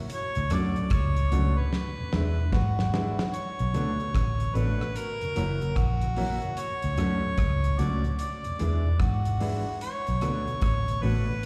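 A round, punchy, foam-muted electric bass anchors this hypnotic, laid-back roots reggae piece at 74 BPM in B dorian, beneath a distant, roomy harmonica melody with dub and slapback echo, a dry 70s drum kit with fat snare, tight kick and a fill from 1.7 to 3.3 seconds, a flute-like tonewheel organ through a slow rotary speaker, a dark, clean electric guitar, and woody upright piano stabs tucked in the background, the whole mix heard as a live gig through the venue's PA.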